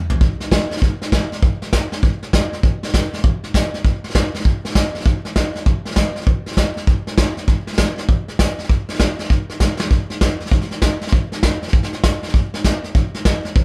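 Rowdy and upbeat, this short rock passage cut from a longer piece races along at 198 BPM in 4/4, its eighth notes swung at 64%. The only instrument is a soft brush drum kit, heard from 0.1 to 13.6 seconds, with hi-hat, kick drum, snare drum and toms all in play. Brushes give the acoustic kit a natural character, with a medium-tuned snare and a tight kick sitting up front in the mix. A drum fill opens the recording, and another fill from 9.6 to 9.9 seconds carries the opening section into a second section that runs to the close. The sound is that of a band playing live in one studio room, lightly touched with reverb.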